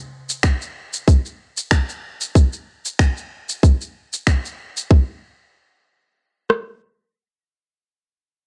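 Electronic shaker and finger snaps open this mystical, meditative organic downtempo excerpt at 0.3 s, joined almost at once by an up-front organic electronic drum kit with a tight kick and rim click, both parts carrying studio reverb over a lightly swung 4/4 groove. The shaker and snaps drop out at 4.9 s, leaving the produced kit to carry on until 6.7 s. The overall sound is dry and gritty, colored by transformer saturation and cassette tape.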